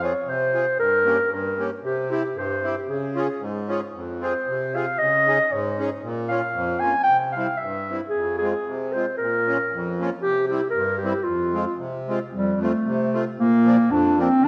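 Alpine folk in F minor at 114 BPM with a lightly swung, rubato 2/4 feel, this jolly, bouncy excerpt sets a dark, distant classical-style solo clarinet up front over a reedy, slow-beating accordion accompaniment in a roomy scoring-stage reverb, the harmony moving through F minor toward a brighter F major turn at 12.3 seconds.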